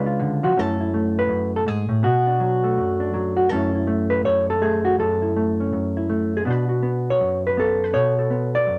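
Swung eighth notes drive this brisk 163 BPM solo jazz passage in 4/4, cut from a longer piece and set in F# minor with a cool, late-night mood. A lone electric hollow-body jazz guitar, dark and clean with a fingered touch, sits up front and moves from a C#7b9 pickup into an F#m7 and Bm7 progression. A moderate studio reverb lends a modest sense of room around the guitar through to 8.8 seconds.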